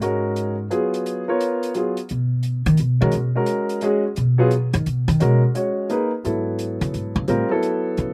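An upright bass carries the solo across the whole fragment, its pizzicato steel strings sounding woody and sitting up front in the mix. This is intense, spiritual modal jazz in a brisk three-four waltz with a swung eighth-note feel, cut from a longer piece. A concert grand piano accompanies throughout, its tone warm and natural with deep bass, also placed up front. A hi-hat keeps time quietly in the background, dark and smooth with a small-room character. The harmony rests on G#m7 before moving to F#m9 at 6.2 seconds, and the overall sound is dry and open, with little reverb.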